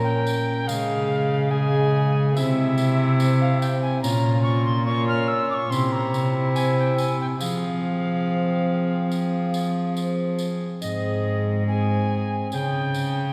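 Classical, renaissance-style consort dance with a solemn, rustic mood, heard as a short excerpt in the long, wet reverb of a church. An airy, chiffy soprano recorder carries the melody over a nasal viola second line with light vibrato, while a ringing, fingerpicked concert harp sits in the background and a punchy trombone fills out the accompaniment above a close, reedy gut-string cello bass that stands up front. A jingly tambourine enters at 0.3 s, and new material arrives at 10.8 s before the passage is cut off.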